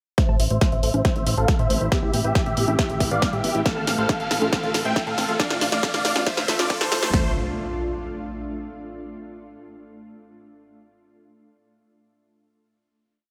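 A huge, euphoric supersaw lead dominates this short uplifting trance piece, its detuned unison sawtooth voice sitting bright and up front with a phaser and digital delay as it plays a repeating riff melody in thirds and sixths. The mood is soaring and bittersweet at 138 BPM in A minor, moving through Am, Em/A, F/A and Dm/A in one build that resolves to a final A minor chord at 7.1 seconds. A big-room drum kit drives a punchy, overdriven four-on-the-floor kick and snare, layered with a tape-toned analog drum machine adding closed and open hats, high conga and backbeat snare, re-recorded in a small room. Underneath, a plucky, funky analog bass rolls in sixteenth notes with ring modulation and sidechain pumping, while a tight, nasal sequenced synth runs a 32-step arpeggio in the background. A shimmering, ethereal pad enters at 1.4 seconds with dark, granular sustained chords and an octave-up shimmer, and a riser and impact in the background carry the transition from 2.9 seconds to the end. 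Filter sweeps on the lead and arpeggio plus a drum fill push the whole build-up toward its climax, all under a light reverb.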